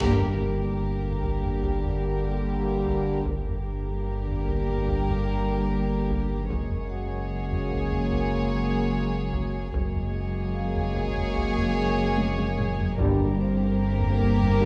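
Cinematic suspense score at 74 BPM, uneasy and tense, where soft-attack sul tasto violin sections carry a floating melody and an intimate second line over a background viola section, while dark, distant French horns and smooth-topped trombones hold sustained chords. Cellos, very quiet double basses and a deep, clean sine sub bass anchor the low end, as compressed, saturated taiko drums sit in the background and the harmony moves from Gm to F#add9 at 6.5 seconds before returning to Gm. A very quiet electronic impact opens the cue with a band accent, a metallic, ringing vibraphone with fast motor vibrato enters at 1.6 seconds, and soft timpani strokes mark the start and a moment after a drum fill near the close, all in a moderate scoring-stage reverb with a dark, warm production.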